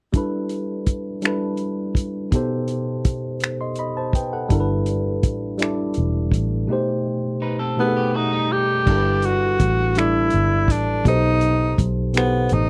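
A dry, close 1970s-style studio sound with a touch of lossy grit frames this slow, sensual six-eight R&B excerpt in G major at 55 BPM, where a worn, slightly out-of-tune tine electric piano through a phaser and a muffled soul drum kit with finger snaps, hi-hat, tight kick and dark crash open together over alternating G69 and B7b9b13 chords. A round, foam-muted fingered electric bass joins at 4.5 seconds, a scooped, slightly broken-up picked guitar adds a brief second line, and at 7.8 seconds a breathy tenor saxophone takes the melody up front, its subtone, soft attack and light vibrato doubled by a slapback echo.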